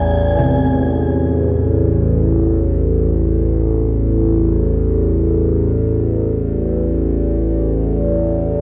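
A dark, ominous drone opens this short piece cut from a longer work. It sits low, between A1 and E2, and stays up front. Its detuned sawtooth and sine tones carry moving overtones over a slow attack and long release, thickened by chorus and its own reverb. At 0.4 seconds, gamelan-type bossed gongs join in the background with arpeggios on C3. Their bronze, beating tone is treated with dub echo until they stop at 6.5 seconds. The piece unfolds in free time over A minor in A harmonic minor, and a wet echo chamber gives the mix a cavernous, echo-heavy depth as the drone sustains to 8.6 seconds.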